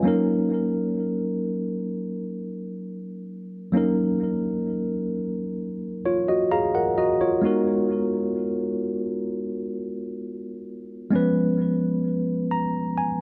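A worn, slightly out-of-tune tine electric piano plays alone, clean and up front with digital delay and light reverb, through this longing, moody 13.2-second R&B excerpt at a slow 65 BPM in Eb minor, moving from Ebm7 to Abm9 and Db7, with fills around 6.0 and 12.0 seconds.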